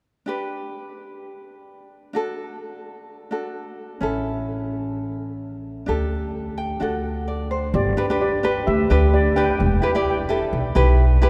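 Calypso in G major at 129 BPM, carefree and festive, with a light swing on the sixteenths in this short cut from a longer piece. A bright, fingerpicked acoustic ukulele opens at 0.3 seconds and sits up front, carrying the chords from G through D and A to a Dsus4, then adds a fill before the second section begins at 7.7 seconds. An upright bass joins at 4.0 seconds, plucked on gut strings with a woody, thumpy tone that also sits close to the listener. The steel pan takes the melody only briefly, from 7.8 to 10.2 seconds, a mellow, shimmering lead pan played with soft rubber sticks over G and E minor. Everything is bathed in a long cathedral reverb from a church or concert hall, giving the small group a spacious, ringing ambience.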